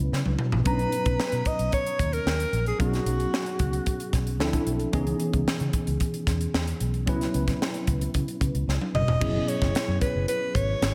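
A worn, slightly out-of-tune tine electric piano with light overdrive and chorus opens this glossy, breezy 1980s jazz-funk pop excerpt at 112 BPM beside a dark, round, foam-muted fingered electric bass, and a crisp, airy fusion kit with a high-tuned snare and tight kick enters on a fill at 0.1 seconds, while a breathy, close-miked alto saxophone with vibrato, scooped notes and tape echo sings an intimate jazz line from 0.7 seconds and returns at 9.0 seconds over lush sus4 and ninth chords in a dreamy, reverb-soaked hall mix.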